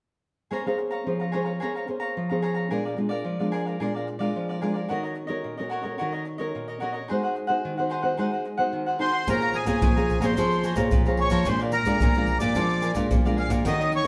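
A reedy, up-front accordion takes the melody at 9.0 seconds in this bittersweet, nostalgic samba-choro excerpt in B-flat minor at 110 BPM, joining a crisp picked cavaquinho and a fingerpicked nylon-string guitar that set out the minor-ninth and seventh chords from the start, before a thumb-plucked nylon-string guitar playing the bass line, tube shaker, deep surdo and close pandeiro arrive at 9.3 seconds, all captured as a band playing live in a stone room with a wet reverb.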